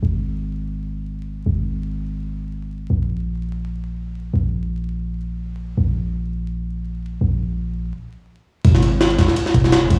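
Drum and bass with a jungle edge, this nostalgic, atmospheric clip opens on a deep, boomy 808-style bass alone, its sine tone carrying a noise layer, a fast attack and a decaying tail, set up front. After a stop at 7.9 seconds, the drop lands at 8.6 seconds as a gritty, compressed, pitched-up sampler-style kit enters over swung sixteenths, with a thumpy kick, high-tuned snare and ride cymbal that were re-recorded in a large room and also sit up front. Vinyl crackle and the sense of a big sound system playing in a bare room colour the whole recording.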